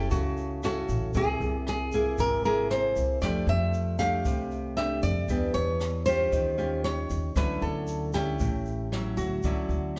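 Sophisticated and relaxed, this bossa nova excerpt moves at 116 BPM in a straight 4/4, with two up-front, fingerpicked nylon-string guitars carrying the melody and a full-bodied chordal accompaniment, finger squeak audible on both, over changes that drift from F#m7 through Caug7 and Eb9 to Dmaj9. A woody, thumpy pizzicato upright bass with gut strings anchors the low end, while a brushed jazz kit with a boomy kick, hi-hat and rim click, plus a grainy tube shaker, sit in the background from 0.1 seconds. A moderate recital hall reverb gives the whole a soft, rounded sound, its top end dulled as if captured in a church or concert hall.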